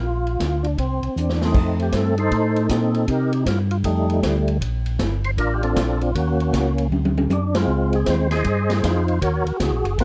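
A percussive tonewheel organ leads this short cut from a longer soul jazz organ trio, carrying the melody with a fat, lightly overdriven tone, second-harmonic percussion and audible key click, while a second, mellow organ supplies a round, dark bass line from the very start. Both organs sit up front through a slow rotary speaker and chorus vibrato, giving the groove a greasy, swinging mood at 156 BPM in 4/4 with a firm swing feel in F mixolydian. A big-band style drum kit comes in at 0.3 seconds, sounding acoustic and somewhat distant in a roomy studio, with dark cymbals, a medium-tuned snare and a punchy kick, and it adds a short fill at 1.2 seconds before the second section begins. The harmony moves through rich changes such as F7, F13, Bbmaj9, Ebm7, D7 and Dbmaj9, and the trio hits a band accent at 7.5 seconds. The sound is dry, with little reverb.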